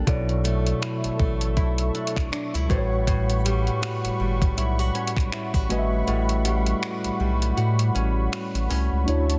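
Contemporary R&B with a smooth, romantic mood and a gentle swung lilt, this clip is cut from a longer piece and moves from Bm11 to A13. A mellow tine electric piano carries the accompaniment with a clean tone, as if heard through built-in speakers, while a dark, detuned sawtooth pad holds soft-attack sustained chords with chorus and sidechain pumping. Bright, fingerpicked flamenco guitar arpeggios on fresh strings add an acoustic sparkle, with audible finger squeak. Up front, a deep, thick, saturated sub bass anchors the low end with a fast attack, joined from 0.1 seconds by a tape-toned, gated 80s digital drum machine playing finger snaps, hi-hat and a thumpy kick, with soft clipping on the snare and a small-room character. The kick drops out from 6.1 seconds onward, and light digital reverb surrounds a dense, heavily limited modern master.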